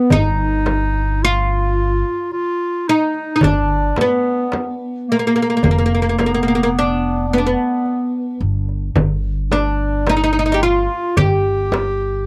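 This is a dry, close recording in a 1970s studio style, with light reverb. A festive, warm-hearted Arabic maqam ensemble plays in G maqam saba, in a straight 10/8 at 109 BPM counted in eighths, in a passage cut from a longer piece. Up front, a bright, woody oud carries the melody, its plectrum-plucked double strings ringing on a fretless neck. A dark, classical-style clarinet shares the front as a solo second line. A pizzicato upright bass with steel strings sits deep and shadowy on its low notes. The percussion comes from a crisp, high, metal-shelled darbuka heard in a small room, and a close, dry frame drum played with soft hands. All five parts sound together from the opening moments; the oud and clarinet carry on to the end at 12.3 seconds, while the drums drop away just before it.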